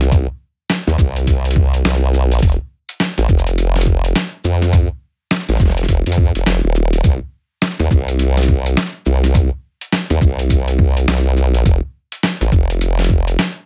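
Glitch hop at 104 BPM in C dorian, playful and funky with a 61% swing on the sixteenths, where an up-front formant-sweep wobble bass of sawtooth and sine tones, chorused and tube-saturated, ranges from Eb1 to F2 over a gritty, pitched-down, sampler-style kick with a thumpy punch and a tape-warm boom bap kit of hi-hat, shaker and medium-tuned snare, all kept dry with little reverb across this 13-second excerpt from a longer piece.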